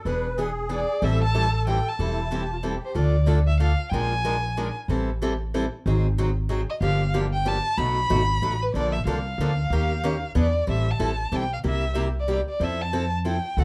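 A swung three-beat lilt carries this bittersweet, virtuosic stretch of acoustic string swing, where a reedy, shimmering musette accordion plays a second line only until 2.9 s, a bright, boxy picked steel-string guitar with finger squeak provides accompaniment alongside a woody, thumpy pizzicato upright bass, and an expressive bowed violin sings the melody with vibrato and portamento from 0.7 s, set in a dark production with moderate studio reverb.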